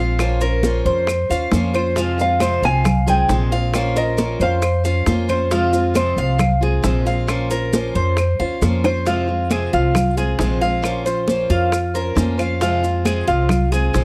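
Cuban son and guajira in F minor at 135 BPM, this sultry, dry 1970s-style studio excerpt is led by an up-front metallic tres picking double-strung arpeggios and a dark, thumpy pizzicato upright bass over a picked steel-string acoustic guitar with audible finger squeak, while tight high-tuned bongos play close and dry, bright hard-handed congas, woody claves and grainy maracas sit in the background, and a small fingerpicked nylon-string guitar adds a brief melody from 2.2 to 4.8 seconds before a drum fill at 8.6 seconds ushers in the next section.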